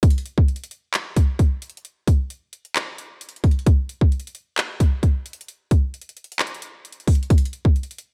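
This hip hop fragment, cut from a longer piece, sits at 132 BPM in 4/4 with a half-time feel, giving it a heavy, unhurried gait. The mood is melancholic and brooding, carried entirely by an electronic trap drum kit that plays from 0.0 to 8.1 seconds. Handclaps, hi-hat and kick drum make up the kit, with a hard-clipped kick and metallic hats placed up front in the mix. The production is dark and warm, with little reverb, so the drums feel dry and immediate. The whole fragment forms a single section, a brief, shadowy snapshot of the groove.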